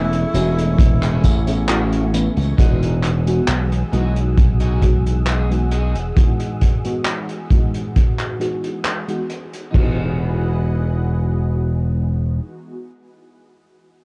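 Vaporwave at a slow 67 BPM in E major, woozy and nostalgic, with a dark, cassette-worn production in a small room. A clear tenor saxophone with vibrato and tape echo states a brief phrase over an FM electric piano drenched in phaser and chorus, a thick detuned unison pad, and a bright, punchy slap bass up front, while a twangy, slightly broken-up guitar riff sits in the background. Gritty, saturated breakbeat drums with a punchy kick play beneath. A short break arrives at 1.7 seconds, then a filter sweep on an analog synth pad carries the move from Amaj7 to Emaj9 at 2.6 seconds.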